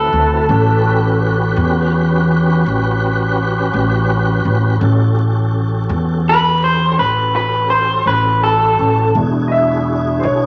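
In a slow, laid-back 12/8 at 56 BPM, this rollicking blues excerpt in A mixolydian sets a picked, slightly broken-up electric guitar melody through a small old amp with spring reverb over a full, lightly overdriven tonewheel organ with slow rotary speaker and chorus vibrato holding chords, a growly, woody pizzicato upright bass up front, and a clear, slightly detuned upright piano adding a second line from 9.5 seconds, all moving from A13 to E9 in a wet room with vinyl crackle.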